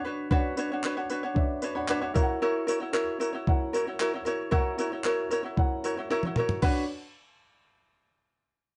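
A straight 114 BPM pulse in 4/4 drives this tender, reflective acoustic pop fragment in B minor, where a bright, fingerpicked ukulele sits up front beside a woody upright piano with audible action noise, while a gritty, pitched-up jungle sampler-style kit with a thumpy kick, high-tuned snare, handclaps, tambourine and crash enters at 0.3 seconds and rolls through a drum fill at 6.1 seconds, all moving from Bmadd9 to F#7 and back in a dark, moderately reverberant mix.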